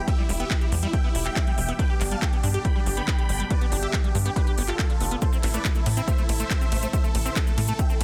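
Soaring and driving, this uplifting trance excerpt rides a punchy, up-front electronic kick and a layered techno kit of handclaps, smooth hi-hats and ride cymbal, with a tight, plucky sawtooth sequencer bass and squelchy, resonant acid-bass arpeggios carrying delay beneath a huge, euphoric detuned supersaw lead with phaser, tape colour and delay, all over a lush, airy pad sustaining Em, G and Am chords in the background, several parts pumping to the sidechain, and a grainy cabasa slips in at 5.2 seconds within a dense, heavily limited, nearly dry mix.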